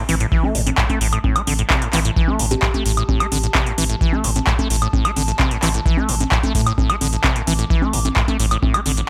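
A straight groove drives this trippy, raw acid house fragment, cut from a longer piece. An overdriven electronic kick, deep and re-recorded in a small room, sits beside a booming, up-front analog drum machine playing congas, handclaps, woodblock and metallic hi-hats, also pushed into overdrive. Underneath, a round, dark analog bass holds the low end with sustained, fast-attack notes, pumping against the kick, while a squelchy, resonant sawtooth acid bass riff carries a filter sweep, with chorus and delay adding movement. High above, a mellow, wave-folded pad warbles in the background with a nostalgic, lo-fi tape-like character, softened by chorus and its own reverb. At 2.5 seconds a brief, woody kalimba pluck rings through tape echo from a boxy small room before vanishing, and the groove rolls on under light digital ambience.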